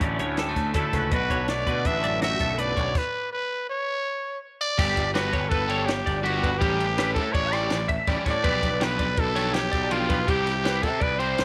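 Light studio reverb gives this brief cut from a longer math rock and midwest emo piece a polished studio sound, with a growling trumpet placed up front. The mood is wistful yet bright, moving at 164 BPM in a straight 5/4 and tuned slightly sharp to A4 = 441 Hz. The raspy, gritty trumpet carries the melody with light vibrato in a punchy pop style, over a clean twelve-string electric guitar whose bright, compressed arpeggios pass through an ensemble chorus. A fuzz-driven picked bass adds growly low end, and a compact cocktail drum kit sounds dry and natural, with dark cymbals, a high-tuned snare and a punchy kick. A twangy, scooped electric guitar accompanies the opening chords through to a stop at 3.0 s, and at 4.8 s a double-tracked overdriven guitar riff enters in the background as the harmony moves from Gmaj7 through A7sus4 and G7/B to Cmaj7.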